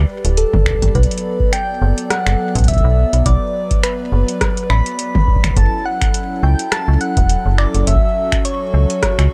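A metallic FM bass sits up front in this glitchy, playful IDM excerpt, its fast-attack notes decaying mellow and low beneath a round, keys-like FM lead that carries the melody with chorus and digital delay over a hollow, flute-like pad pumping under sidechain. At 104 BPM in 4/4 with a light 16th-note swing, an analog drum machine enters at 0.2 seconds with finger snaps, metallic hats, rim clicks and toms, and a deep electronic kick follows at 0.5 seconds, both carrying a small-room character. The dark, dry production moves from G to Bm7 and settles on F#m7 at 5.6 seconds.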